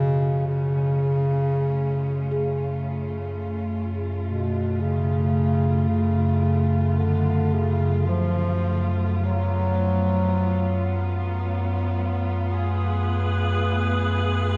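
Dark ambient drone, desolate and unsettling, where an ominous rumbling drone sits up front beneath a smooth-topped solo bass clarinet melody with delay that ends at 11.4 seconds, while a woody, lush cello section fades in on sustained bowed chords, a mellow bronze metallophone fades out through delayed arpeggios in the background until 8.9 seconds, and an icy, crystalline glass pad with chorus enters at 12.8 seconds, the piece set in a vast, echoing space with long cathedral reverb and captured on cassette tape.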